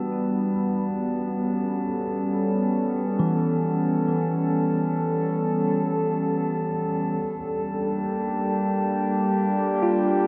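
In free time, this peaceful ambient fragment rests on a warbly, nostalgic tape-like pad holding mellow sustained chords up front while a clean tine electric piano spins delayed arpeggios, a glassy, ethereal glass harmonica fades in as texture throughout, and a very quiet, evolving analog drone joins at 8.8 seconds, all soaked in a dreamy plate reverb as the chords move from G to Bb6.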